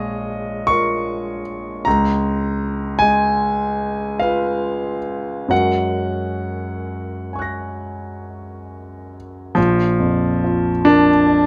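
A clear, intimate concert grand piano plays alone from the first moment in this dreamy, serene impressionist classical piece in F# major, drifting in rubato 9/8 at roughly 42-55 dotted-quarter beats per minute through A#m7, C#6 and F#add9 harmonies across a range from deep bass to high treble, its long sustain, up-front presence and audible action noise caught in light reverb before the music turns to a Bb chord and a new section at 9.6 s, breaking off at 11.5 s as a fragment of a longer work.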